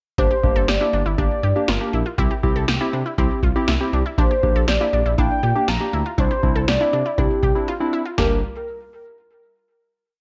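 A velvety sawtooth synth lead carries a motif-based melody of call phrases with vibrato, portamento, chorus and digital delay in this melancholic, cool synth-pop piece in G dorian at 120 BPM. Round analog keys with chorus play syncopated close-voiced chords over a smooth, detuned synth bass, while a bright, wave-folded unison pluck repeats a delayed arpeggio ostinato beneath. An up-front analog drum machine with a deep kick and punchy snare drives a straight beat until a break at 7.7 seconds, and a final G minor chord rings from 8.2 seconds in light reverb.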